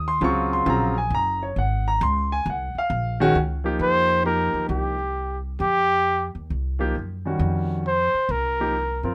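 Intense and hypnotic, this modal jazz excerpt swings in 4/4, with a concert grand piano of deep bass, long sustain and audible action noise comping over Ab9sus4 alongside a woody, growly pizzicato upright bass. At 3.8 seconds the harmony moves to F9sus4 and a dark, breathy trumpet enters with a light-vibrato solo, sitting up front in a light reverb as the passage cuts off, part of a longer piece.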